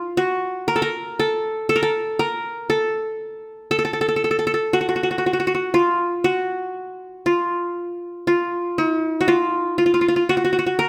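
A solo qanun, played with fingerpicks on triple strings and sitting up front with a mellow yet bright-edged tone, carries this festive, warm Arabic excerpt in a straight 10/8 at 119 BPM counted in eighths, moving between E4-50c and Bb4 for 10.9 seconds under light reverb and close, detailed miking.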